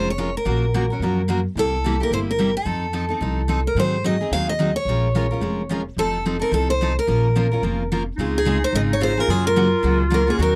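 Swinging and fiery, this short fragment of acoustic string swing in the jazz manouche tradition races along at 217 BPM in Bb minor, with a lively swung eighth-note feel. Up front, a bright, concert-style steel-string guitar carries the picked melody, while a second, full-bodied jumbo steel-string guitar supplies the picked accompaniment. Beneath them an upright bass plays pizzicato on gut strings, its tone woody, dark and thumpy. At 8.2 seconds the music moves into a new section over a Dbmaj7 chord, and a clarinet enters with a jazz-style second line, its vibrato and scooped notes sounding distant and roomy. The harmony travels through dominant sevenths such as C7, F7 and Ab7 before settling on Bbm and then Gb. The dry, close sound recalls a 1970s studio, with only light reverb.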